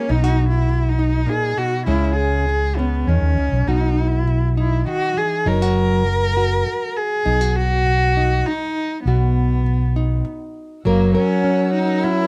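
A bowed solo cello carries the melody up front in this nostalgic, pastoral folk piece in 3/4, its soft attack, vibrato and portamento giving the line an expressive, singing quality. A bright, fingerpicked nylon-string guitar supplies small-sounding accompaniment, while a round, punchy electric bass sits dark and amped beneath, all in light reverb. At 10.8 seconds a dark chamber string section enters in the background with smooth, sustained bowed chords, and the fragment ends at 12.3 seconds, cut from a longer piece.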